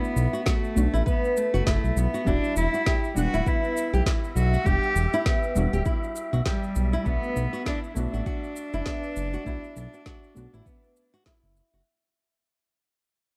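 A smooth, saturated synth bass sits up front in this hypnotic, earthy slice of organic downtempo, its sustained low notes pumping against the sidechain under a lightly swung 4/4 groove. A rich cello carries the melody with an airy bow and a nasal, reedy gut-string tone, while a fingerpicked flamenco guitar, finger squeaks and all, spins acoustic arpeggios, both trailed by delay. In the background, a deep, detuned chord stab with a filter sweep adds a soft, full-bodied bed through chorus, delay and pumping as the harmony moves from Bm7 to Em7 and back. A tape-warm electronic kick drum enters up front at 0.5 seconds alongside a layered electronic shaker and woody snare set in small room ambience, and a dark, breathy wind-like noise texture drifts in at 3.1 seconds. The production is dark with light reverb, and a fade-out begins at 5.5 seconds in this passage cut from a longer piece.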